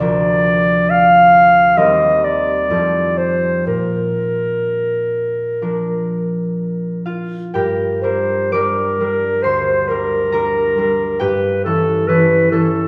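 A mellow clarinet carries a lyrical solo melody up front in this romantic classical duo, its line sitting between A4 and F5. A bright, ringing concert harp plays fingerpicked accompaniment across a far broader, lower-reaching span, from D2 to D6, also placed up front but a little softer than the clarinet. The pulse is flexible and rubato in 4/4, giving the phrases an unhurried, lyrical feel. The opening passage moves through Bb major harmony before a second section begins at 7.5 s on a minor chord. A wet recital-hall reverb surrounds both players, and the pair sounds as if heard from further back in the room. The recording is cut from a longer piece and runs to 12.9 s, with a warm, songful mood throughout.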